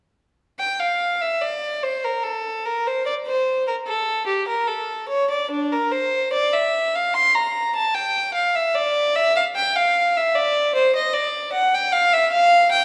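A wet recital-hall reverb surrounds this short excerpt from a baroque-style suite movement for unaccompanied violin, its grave, flowing mood carried in a free, rubato 4/4. The lone bowed violin sits up front from 0.6 seconds to 12.8 seconds, with a nasal, reedy gut-string tone and a smooth top in period style, ranging from D4 to C6.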